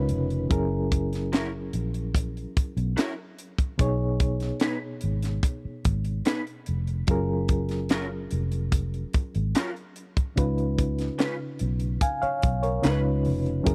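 A tight funk drum kit sits up front, with a punchy kick and a high-tuned snare ringing in a small room alongside the hi-hat from 0.1 seconds. This is a lush, smooth slice of 1970s-style soul at an unhurried 73 BPM in 4/4 with a straight feel, set in F# major. A dark, round, foam-muted fingered electric bass anchors the low end, while a reedy electric piano plays clean accompaniment through its built-in speakers with a medium tremolo. From 1.3 to 13.0 seconds, an electric guitar through a small old amp picks a slightly broken-up, lo-fi riff, compressed and colored by analog chorus. The chords move from C#7 to F#7, B6 and F#maj7 before returning to C#7, all captured in a dry, close 1970s-style studio recording cut from a longer piece.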